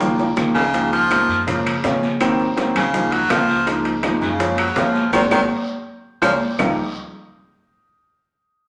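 A lively, straight 4/4 Afro-Cuban jazz groove at 164 BPM in Db major carries this sophisticated excerpt cut from a longer piece, where an edgy, forceful baritone saxophone with scooped notes and vibrato solos up front from 0.5 seconds over an intimate concert grand piano with audible action noise and long sustain, a dark, thumpy pizzicato upright bass on gut strings, and a background weave of bright high-tuned congas, round low-tuned bongos, ringing metal-shell timbales, woody claves entering at 0.4 seconds, raspy vintage guiro and grainy maracas, all moving through Db6, Gbmaj7 and Ab7 changes toward a drum fill and band accent from 5.1 seconds in a generous large-studio reverb.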